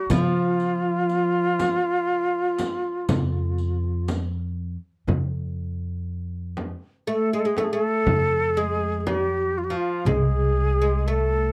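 Festive and passionate, this Arabic maqam ensemble piece in F maqam saba moves at 120 BPM in 10/8, with a breathy, unsteady ney carrying the melody with vibrato over a bright, fretless oud with double strings playing a second line, a pizzicato upright bass on steel strings sitting up front, a hard-handed clay darbuka in the background, a soft-handed frame drum, and a distant riq with dark jingles that drops out at 4.3 s, all captured in a dry, close 1970s-style studio sound.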